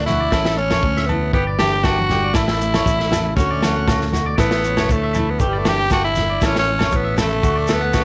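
A carefree, sunny highlife groove at 118 BPM in A mixolydian opens with a raspy, punchy tenor saxophone melody up front with vibrato, over a round fingered electric bass and a fingerpicked flamenco guitar set back in the mix. A bright, clean electric guitar adds twangy picked arpeggios with slapback echo, while a gritty, saturated breakbeat kit with a tight kick and rolled-off top sits mid-forward alongside thick-skinned, low-tuned congas and ringing agogo bells in the background. A grainy shekere enters at 2.3 s as the chords cycle through A, G and D in a small room with light reverb, in this fragment of a longer piece.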